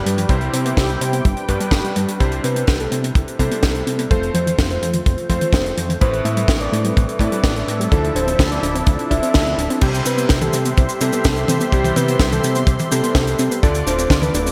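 Melodramatic and nostalgic, this italo disco excerpt moves at 126 BPM in a straight 4/4, with an up-front tight kick and a small-room acoustic funk kit under gated reverb. The kit has a high-tuned snare, cabasa, hi-hat, toms and crash, and it plays alongside a fat, tube-saturated analog bass. A smooth, detuned pad sustains chords while a clear, clangy electric grand piano fires delayed stabs and a soft, round pluck ripples arpeggios in the background, with filter sweeps on both pad and pluck from 2.2 to 9.8 seconds. At 2.2 seconds a dark, octave-layered synth lead enters with vibrato, chorus, delay and a cassette-tape tint, and the whole mix sits in a lush hall reverb with a bright 1980s-style digital sheen.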